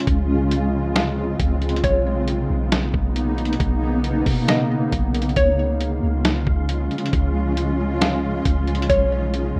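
A blurred, granular cloud pad sits up front in this atmospheric cloud-rap excerpt, holding sustained chords with built-in reverb and a sidechain pumping that makes it breathe against the beat. The mood is floating and blissful, moving at 136 BPM in 4/4 with a half-time feel, as the harmony drifts between Dbmaj7 and Cbmaj9. A compressed, pitched-down lo-fi sampler-style drum kit with a thumpy kick, medium-tuned snare and hi-hat runs from the start, while a soft, round 808-style bass adds deep, dark sine tones underneath. At 1.0 seconds a hollow, bouncy square-wave pluck enters with the melody, its mellow detuned tone thickened by chorus and delay. From 5.8 seconds an airy, wind-like tuned noise texture breathes in the background with its own reverb, all set in a rough home-demo mix with light digital ambience.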